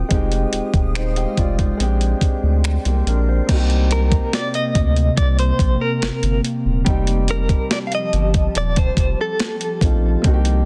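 A dense, heavily limited modern master set in a digital ambience gives this late-night, moody contemporary R&B fragment, cut from a longer piece, a close and polished sound. At 71 BPM in a straight 4/4, tuned to A4 = 435 Hz, it moves from Fm9 and Bb13 into C dorian at 3.5 s, where the harmony settles on Cm7 and then F9. Up front, a saturated, thick triangle sub bass sits beside a sampler-style drum machine whose thumpy kick, medium-tuned snare, finger snaps, hi-hat and crash carry vintage 12-bit grit, with soft clipping on the snare. Beneath them, an intimate concert grand piano with audible action noise plays smooth accompaniment, and a glassy, ethereal FM pad holds slow-attack chords through ensemble chorus, built-in reverb and phaser. A clean, picked electric guitar, recorded direct and compressed, carries the melody from 3.9 s to 9.8 s with tremolo and digital delay.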